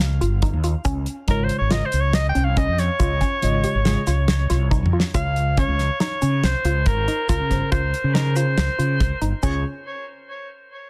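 Progressive instrumental band music in 5/4 with a straight, intricate and bright feel, cut from a longer piece. A woody, wave-folded pluck with chorus spins mellow arpeggios from the very start, alongside a punchy fretless electric bass that sits direct and up front. A damped 70s drum kit, dry with a fat snare and tight kick, enters at 0.2 seconds and plays a fill that leads into the second section at 5.1 seconds, while a grainy egg shaker ticks along in the background. At 1.3 seconds a soprano saxophone takes the vintage, pop-style solo melody with vibrato, scooped notes and delay, over a clean tine electric piano pulsing with medium tremolo through a combo amp. The harmony moves from Db and Dbadd9 to Bbsus2 before settling on Db again, all within a small room and a dense, heavily limited modern master.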